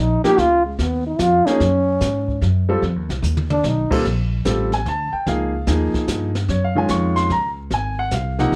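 A breathy, whispered trombone solos up front over the opening 4.0 seconds of this swinging, sophisticated small-group jazz waltz at 147 BPM, with woody pizzicato upright bass, a warm, deep-voiced concert grand, and a brushed kit with dark cymbals and a brief fill at 3.2 seconds, all heard through a moderate club reverb and a worn, warbling old cassette tape sound.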